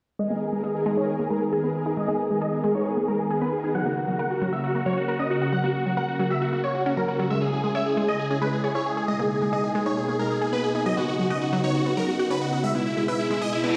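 In a straight 4/4 pulse, this soaring, bittersweet trance passage is cut from a longer piece and is built on a huge, detuned supersaw lead that carries the euphoric melody up front, bright and compressed, through a phaser, low-pass filter sweep and digital delay. Beneath it a lush, thick unison pad holds slow-blooming chorused chords from G#madd9 through F#, C#m, Badd9 and E, while a round vintage analog pluck spins filter-swept arpeggios with chorus and delay. The whole sits in a moderate hall reverb, heard as if through a big sound system in a bare stone room, and an electronic reverse cymbal rushes in at 13.7 seconds.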